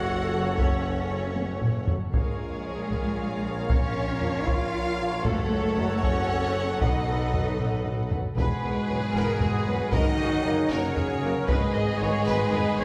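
Heroic and majestic, this excerpt of epic orchestral film score moves at 77 BPM in 6/8, with lush, vibrato-rich violins carrying the melody over a second violin line and intense violas, a dark, distant woodwind section holding sustained chords joined by mellow French horns and trombones from 0.3 seconds, a clear tuba, double basses and expressive cellos anchoring the bass, and a hard-stick taiko ensemble entering at 0.6 seconds with fills, all set in a wet scoring-stage reverb heard from further back as the harmony shifts from Gbm toward a closing G#m.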